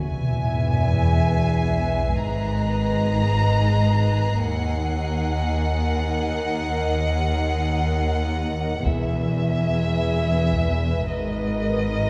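Heard from further back in a reverberant scoring stage, this eerie, tense cinematic suspense cue at 54 BPM in Eb phrygian, cut from a longer piece, sets a focused chamber violin melody over a dark, intimate studio violin second line, a smooth cello section and a rich double bass section, all bowed with vibrato, while soft sul tasto high violins hover in the background until 8.3 s, an electronic sub drop rumbles beneath the opening impact through 4.4 s, and a hard-sticked taiko ensemble sounds distantly from 8.9 s.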